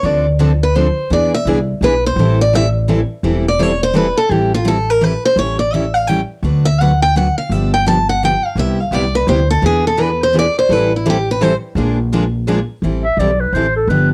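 A bright, boxy parlour guitar carries the fiery lead from the first moment, over a full-bodied jumbo guitar picking out accompaniment with audible finger squeak, a third concert-sized guitar, and a woody, thumpy pizzicato upright bass with a touch of transformer saturation. This is a bittersweet stretch of acoustic string swing in the jazz manouche style, moving in a lilting three-beat swing through minor-key changes such as Dm7, E7b13 and Am7. The third guitar drops out at 4.1 seconds and rejoins at 8.6 seconds, thickening the rhythm again as the harmony passes through Cmaj7, E7 and Bb7. At 13.0 seconds a mellow vintage clarinet takes over the solo with vibrato, subtone and a soft attack, settling on an Am9 chord. The whole piece has the intimate, slightly worn character of a home cassette recording with light reverb, and it is cut from a longer performance.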